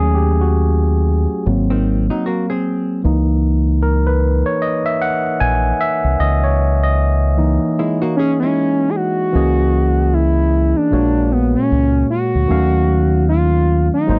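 The recording is dry and close, with the intimate feel of a 1970s studio session, and this short cut from a longer piece settles into an introspective, smooth neo-soul and R&B groove at 76 BPM in 4/4, with a lazy 16th-note swing in C# dorian. A barky tine electric piano, lightly overdriven through a combo amp and sitting up front, carries the accompaniment and takes a featured solo through the first 9.3 seconds. Underneath, a deep dub fingered electric bass stays round, punchy and direct, holding the low end the whole way. A dark, clean hollow-body jazz guitar adds brief compressed second lines, first at 1.7 seconds and again later, while an expressive sawtooth synth lead enters at 8.2 seconds with a mellow, full-bodied, sustained tone, chorus and vibrato. The harmony drifts from D#m7b5 and G#7 to C#m69, then in the closing section passes through A#7alt before returning to D#m7b5.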